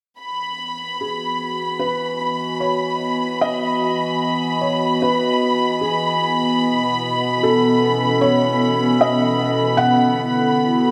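Ambient music in E major at 75 BPM, luminous and serene, taken from a longer piece. A warbly, tape-like pad sits up front from 0.3 seconds, its detuned, nostalgic chords softened by chorus and fading in over Emaj9, then moving to B13 at 6.6 seconds and D69 at 9.8 seconds. A muted studio violin section holds a veiled, con sordino B5 with vibrato from 0.2 seconds, lush and close. Beneath them, a very quiet bowed-like drone adds a tense, string-like sawtooth edge between E3 and B3. From 1.0 seconds a felt-muted upright piano fades in with an intimate melody between G#4 and F#5, its thick felt tone trailed by a diffuse ambient delay. The whole sits in a concert hall reverb with a 2.1-second decay.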